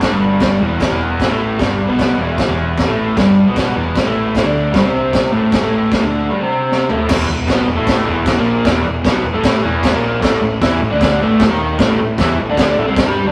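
Garage rock at 153 BPM in a straight 4/4, raw and rowdy, this excerpt from a longer piece opens with an overdriven, double-tracked guitar riff carrying spring reverb over a fuzzy picked electric bass and the drum kit, moving from E5 through Gsus24 before a drum fill at 6.7 seconds pushes into a second section on E5 and A5. The acoustic kit sits up front with a punchy kick, a high-tuned snare and crashes and toms, sounding gritty, mid-forward and rolled-off on top, while the guitar is the loudest part and the bass sits lower in the mix. A stone room reverb and tube saturation give it the rough feel of a rehearsal-room take.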